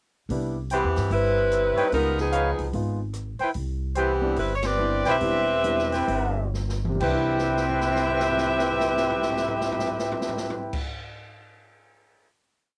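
A smooth-topped saxophone section carries the melody in this short, swinging big band piece, playing motif-based period phrases in four-part block harmony with vibrato, up front in the mix. A mellow, close-miked trumpet section adds brassy syncopated stabs in drop-2 voicings with light vibrato and a touch of cassette tape colour. Underneath, a clear baby grand piano comps in syncopated rootless voicings with short sustain, while a woody, thumpy upright bass plays a pizzicato two-feel line. The open jazz drum kit, with dark cymbals, a medium-tuned snare and a boomy kick, keeps time on the hi-hat with sticks and carries on after the others stop, until 12.3 seconds. The band slows from 3.6 seconds, hits an accent together at 4.6 seconds and arrives on a held final chord at 7.0 seconds, with drum fills leading into it and running beneath it. The whole piece sounds like a home cassette recording in a small, booth-like room.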